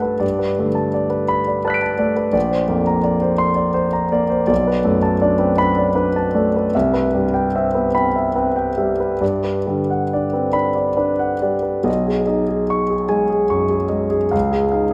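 Serene and dreamy, this short passage of impressionist classical solo piano drifts in 6/8 with free, rubato timing. A concert grand plays alone throughout, its tone warm, intimate and polished, reaching from deep bass notes at Bb1 up to a high D7. The harmony moves through lush colors, opening on Gmaj9 and passing through Bbadd9, Bm7, Cmaj7 and Gmaj7 before a shift to a new tonal center at 11.9 seconds brings B69 and C#add9. The instrument sits up front and present, with long sustain and audible action noise that lends a sense of nearness. A moderate scoring-stage reverb gives the piano a gentle halo, and this fragment of a longer piece breaks off at 14.9 seconds.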